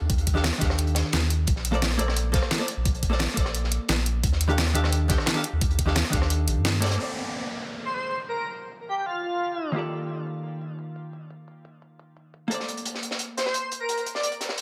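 A clean, dark hollow-body jazz guitar with dub echo carries this lush, uplifting liquid drum and bass excerpt at 174 BPM in Bb major, drifting over Ebmaj9#11 and Bbmaj9 chords above a round, sine-like sub bass that holds until 7.0 s, a knocking overdriven electronic kick, an up-front pop kit with a deep snare and rim clicks, and a gritty, saturated breakbeat kit with a high-tuned snare, while a downlifter enters at 7.0 s and an airy, dreamy lead with chorus, vibrato and tape echo floats in at 7.9 s, all in light reverb.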